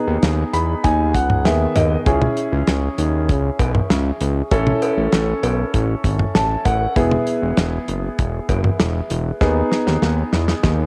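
Synth-pop with a nocturnal, melancholic mood, this brief cut from a longer piece sets an intimate concert grand piano, full of audible action noise and long sustain and coloured by cassette tape, over a fat, detuned sawtooth analog bass with a filter sweep and a dry, damped 70s drum kit with tight kick, toms and cowbell, marked by piano fills near the start and at 6.0 seconds and a drum fill from 9.4 seconds in a small room on a home cassette recording.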